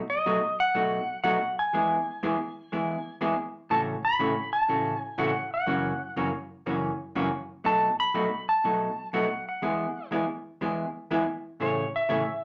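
Country excerpt with a playful, cheerful swing, where an up-front, dark, clean electric lap steel carries the high melody with fingered slide lines and volume swells while a picked hollow-body jazz guitar comps beneath it through a B7, E, A6, F#7 progression that settles on Amaj7, all in a wet club reverb.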